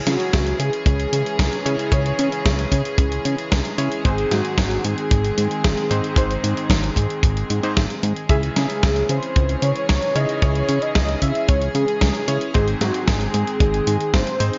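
Italo disco at 113 BPM in C# harmonic minor, this nostalgic, melodramatic excerpt from a longer piece moves between C#m and G# over a thick detuned sawtooth lead carrying the melody with vibrato and tape echo, while a fat, saturated analog bass with filter sweeps anchors the low end. A studio string section with gut-string tone and light vibrato holds sustained chords, and a clear electric grand piano with a clangy low register and chorused unisons adds delayed stabs. Gated 80s digital drum machine hi-hat and snare, tape-warm with gated reverb, sit behind a tight, up-front acoustic kick that enters at 0.3 seconds, all within a small room ambience and a softly rounded top end.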